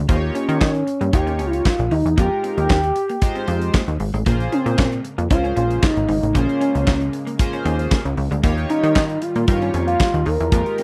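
Early-eighties boogie funk at 115 BPM in Bb dorian, a late-night, danceable excerpt cut from a longer piece, where a gliding portamento lead with chorus, tremolo and slapback echo carries the melody over a punchy, plucky analog bass, a modern drum kit with a tight kick and handclaps, a glossy chorused polysynth, a dark, slightly broken-up guitar riff in the background with lush chorus, and a very quiet analog pad that enters at 4.3 seconds, all in a dry, close 1970s-style studio sound moving through Eb9, Fm11 and Bbm9.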